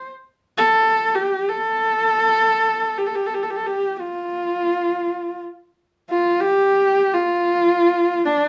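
Vast and galloping, this 8.5-second fragment of Mongolian folk music in free time and the C zhi mode features a single bowed horsehead fiddle playing solo between D4 and A4, its husky, focused tone with a smooth top sitting up front and colored by vibrato and portamento, all set in a moderate studio ambience that suggests a live performance in one room.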